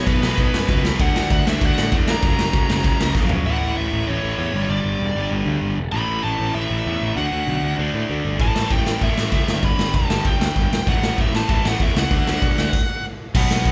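A straight, driving 4/4 pulse pushes this short cut of raw, urgent punk rock, the garage drum kit pounding out a boomy kick, a medium-tuned snare, crashes, ride and toms in a bright stone room that pumps around the hits. The drums sit up front with a saturated, gritty edge and a rolled-off top, dropping out at 3.4 seconds after a quick fill and returning at 8.4 seconds. Underneath, a fuzz-soaked picked electric bass growls in the low register, its direct-and-amped tone bright and overdriven. A double-tracked, overdriven rhythm guitar plays a dark, picked riff up front, while a high-gain lead guitar carries the melody above it with a dark, distorted bite. The band sounds like it is playing live together in one room with light reverb, and everything halts in a sudden stop at 12.7 seconds before the clip ends.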